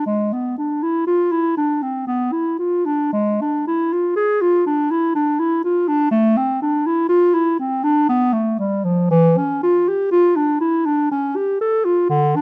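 Close, detailed microphones capture a solo clarinet up front, wrapped in a light reverb that gives the room a gentle sense of space. This short classical excerpt is a baroque-style fantasia for unaccompanied clarinet in triple metre, played with a free, rubato feel. The clarinet has a dark tone and moves through its lower and middle register, carrying the whole piece from 0.0 to 12.4 seconds. The mood is flowing and introspective, as the lone line unfolds with a thoughtful character. Cut from a longer work, the passage feels like a private meditation caught mid-thought.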